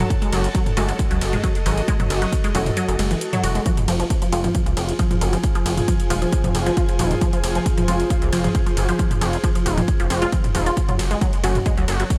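Driving peak-time techno in an industrial, intense mood, this excerpt runs a gritty, saturated synth bass up front beneath a squelchy resonant blip pluck riff with chorus, overdrive and delay, an airy breathy pad and muted dub chord stabs with tape echo in the background, all pumping against a heavy, tape-warm electronic kick that drops out from 2.8 to 3.7 seconds while a techno kit of hi-hat, ride cymbal and toms keeps going, as the harmony moves from Gbm to Fm and back to Gbm at 10.8 seconds in light digital ambience.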